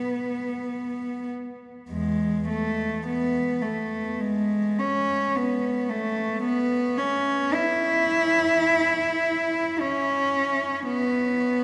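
Heard through a long, wet cathedral reverb, a single bowed cello sits up front and close, its rich tone carrying vibrato, soft attacks and an airy bow sound. The classical solo moves freely in rubato, nostalgic and serene, ranging from E2 to E4. This brief passage, cut from a longer piece, runs for 11.6 seconds.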